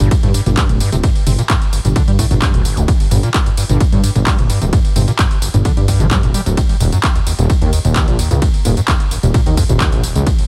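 Driving peak-time techno at 130 BPM in G harmonic minor, this dark, industrial excerpt pairs a squelchy, gritty overdriven acid bass riff carrying distortion, subtle chorus, analog delay and sidechain pumping with a thick, beating detuned saw bass that pumps menacingly beneath it, while an up-front, heavy overdriven electronic kick sits alongside a layered, overdriven techno kit of handclaps, hi-hat, ride cymbal, tambourine and toms in a dry, echo-heavy mix, the G5 harmony dropping away at 6.6 s.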